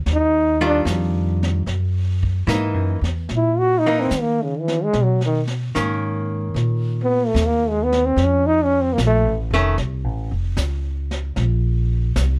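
A slow swung 4/4 at 74 BPM carries this intimate, smoky jazz ballad excerpt, where a warm trombone with light vibrato and scooped notes takes the solo until 9.4 seconds over a woody, growly pizzicato upright bass, a dark, clean, compressed hollow-body archtop guitar comping until 9.8 seconds, and a soft brushed kit with a high-tuned snare and punchy kick, all in a dry, close sound as chords move from Ebmaj9 through Gb13, Bmaj9 and Faug to Bbsus2.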